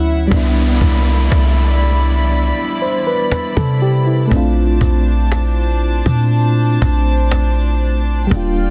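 A dense, heavily limited modern master in a small room frames this dreamy, romantic contemporary R&B excerpt at 60 BPM in C major, moving from Cmaj9 to Bbmaj9. A deep, boomy 808-style bass sits up front under a mellow FM electric piano with a round, warbling vintage tone coloured by chorus and tremolo, while a studio string section holds floating, smooth-topped bowed chords and a snappy, close cajon keeps time. A dark, thumb-plucked nylon-string guitar with digital delay plays arpeggios in the background only until 0.9 seconds, and an electronic downlifter runs from 0.3 to 8.3 seconds.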